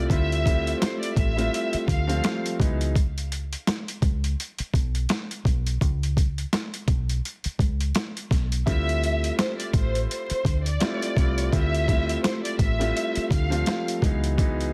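Swung, head-nodding drums with a thumpy kick and high-tuned snare from a gritty, pitched-down, overdriven sampler kit drive this moody boom-bap hip-hop excerpt, anchored by a round, dark, foam-muted fingered electric bass, while a boxy, intimate grand piano with audible action noise and cassette-tape color and a lush, vibrato-rich bowed violin section drop out just before the break at 3.0 seconds and return at 8.7 seconds, all set in a small room with vinyl crackle and a dense, heavily limited master.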